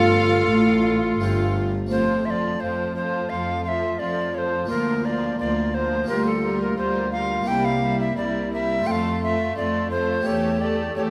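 A tenor recorder with an airy, chiffy wooden tone sits up front over dry, brilliant harpsichord and vibrato-rich chamber strings (violins, distant violas, expressive portamento cellos, and a double bass section heard only until 1.9 s) in this dramatic, stormy baroque-style concerto movement in F major at 86 BPM, cut from a longer piece and set in a wet recital hall reverb.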